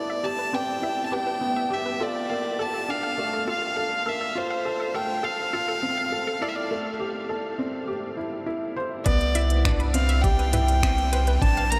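Hopeful and tender, this piano and strings electronica opens with a single bowed violin carrying a floating, pure melody up front, over a soft, felt-muted upright piano riff with audible action noise and tape echo, while a bright, detuned analog pluck plays arpeggios in the background with chorus, sidechain pumping and tape echo. After a break from 6.7 s, the drop at 9.1 s brings in a deep, round sine sub bass with sidechain pumping, a muffled, thumpy pitched-down kick, and an electronic kit of finger snaps, crisp hats and toms re-recorded in a large room. The dreamy mix is soaked in a huge ambient reverb, and the piece is cut from a longer work.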